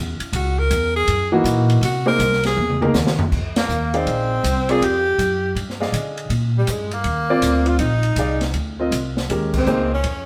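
A moderate stone-room reverb surrounds this live, one-room take, which is cut from a longer piece of hypnotic, searching modal jazz in F minor, swinging in 4/4 at 161 BPM. A woody pizzicato upright bass sits up front alongside an acoustic drum kit with dark cymbals, a medium-tuned snare and a boomy kick. The close-miked tenor saxophone enters at 0.4 seconds with a clear, vibrato-laden solo voice, and a warm baby grand piano joins the accompaniment at 1.3 seconds. After a drum fill, the harmony moves from an altered opening into a long F13sus4 passage. At 3.6 seconds a punchy, forceful alto saxophone adds a bright second line with vibrato, set back behind the tenor, while the band hits ensemble accents along the way.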